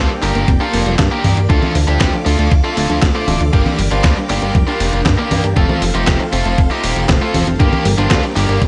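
Italo disco with a melodramatic, nostalgic mood, this short excerpt sets a bright, distorted high-gain lead guitar melody with digital delay over lush string-machine chords treated with phaser and ensemble chorus, a very quiet detuned unison pluck playing arpeggios, and clean tine electric piano stabs in the background. Underneath sits an up-front chorused synth bass, glossy and tube-saturated, alongside a gritty, compressed sampler-style kit of congas, handclaps, hi-hat and a fat snare in gated reverb, joined at 0.5 seconds by a thumpy, tape-warm electronic kick. The chords move between Gm, Dm and F in a lightly reverberant mix.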